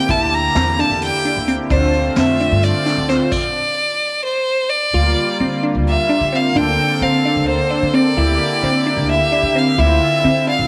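Set in a small, lightly reverberant room, this driving, intricate progressive instrumental in 7/8 at 260 BPM (eighths) features a bright, intense bowed violin carrying the melody up front with vibrato over a shimmering, retro pulse-width pad with chorus, glassy chorused wavetable pluck arpeggios and a woody pizzicato upright bass, while a vintage brush kit with dark cymbals plays only until 3.4 seconds before a stop from 3.3 to 4.9 seconds leads into a new section moving from Gm7/D to a closing Dm9.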